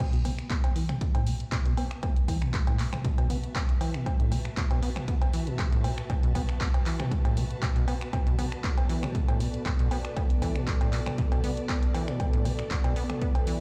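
Acid house at 118 BPM in B minor, opening on a Bm7 chord, trippy and hypnotic, built on a rubbery, resonant acid bass riff with tube saturation, delay and sidechain pumping, over a dry analog drum machine of hi-hat, handclaps, finger snaps, cowbell, toms and crash, with a punchy electronic kick up front from 0.5 seconds. A bowed string section fades in throughout, sitting in the background with vibrato and portamento, while a moody, detuned pad with chorus adds sustained chords from 8.5 seconds. The sound carries a big-system, bare-room character with large studio reverb, and the passage is cut from a longer piece.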